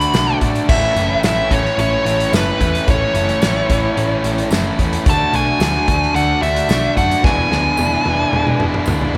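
Wistful and jangly, this short indie rock passage, cut from a longer piece, moves at a straight 110 BPM in 4/4 in A major, with chords shifting from D6 to A6 and back before landing on E7 at 7.2 seconds. Up front, a nasal lead guitar with a parked wah and overdrive carries the melody between B4 and B5, its tone warm. Beneath it, a cranked stack guitar and a crunchy overdriven guitar play riffs with a bright, picked bite. They sit over a dark, round, punchy hollow-body short-scale bass reaching down to E1. A loose acoustic drum kit with a tight kick, medium-tuned snare and rolled-off top drives the groove, closing with a fill from 7.2 seconds, while a jingly tambourine sits quietly in the background. The whole passage rings out in a moderate concert-hall reverb of about 2.2 seconds, lending the mix a spacious glow.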